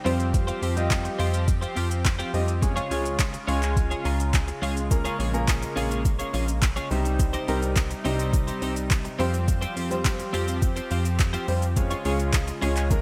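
A bright, 1980s-style digital production with light reverb frames this bittersweet, energetic dance-pop excerpt in F minor at 105 BPM. It rests on an up-front electronic drum kit with a soft kick, woody snare, metallic hats, handclaps and shaker, and a glossy, pulsing synth bass. A concert grand piano with audible action noise plays accompaniment, with fills at the start and around 3.8 seconds, while a clean, picked twelve-string electric guitar carries a chorused riff and a smooth, detuned supersaw holds sustained chords in the background. Both piano and supersaw breathe with sidechain pumping, and a very quiet, grainy tube shaker joins at 4.9 seconds as the chords move through Fsus2, Db, Bbm7 and Cm.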